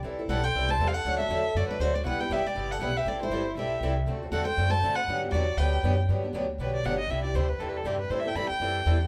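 Acoustic string swing in the jazz manouche style, playful and charming in a short cut from a longer piece, where a picked steel-string acoustic guitar and a bright, boxy swing-style guitar pick out the accompaniment over a woody, dark, thumpy pizzicato upright bass on gut strings, while a second bright parlour-style steel-string guitar adds a picked line until 6.0 s and an up-front bowed violin, warm with vibrato and expressive portamento, carries the melody and takes a solo from 6.1 s, with the band captured live in one room with a wet studio reverb.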